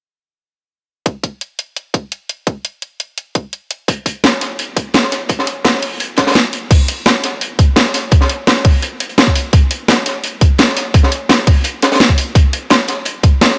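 A tight, up-front electronic kick drives this lush, soulful drum and bass cut at 170 BPM in a straight 4/4, sharing the foreground with a produced garage kit of cracking snare, bright hats and crash cymbal. At 3.9 seconds a crunchy breakbeat kit joins with a high-tuned snare and hi-hats, its small-room sound dark, gritty and saturated, with a rolled-off top. The kick drops out briefly before the drop lands at 6.7 seconds, and the whole short excerpt sits in light reverb and studio ambience.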